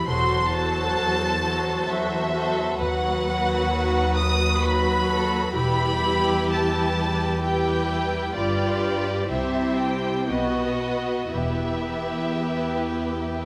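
In a rubato 3/4 that hovers between 56 and 68 BPM, this slow, elegiac movement for string orchestra in E minor is a fragment of a longer piece. A close, up-front violin section sings the high melody with vibrato over a second violin line and a viola accompaniment, both rich in tone and smoothly bowed, the violas with lighter vibrato, while a lush symphonic cello section and a warm double bass section with a smooth top hold the low end; the basses stop at 12.4 seconds and the cellos carry on to the close at 13.4 seconds. The melancholic harmony moves from F#m7b5 over E through B over D# to Em, then G7, C and B before coming to rest on Em, set in a moderate scoring-stage reverb.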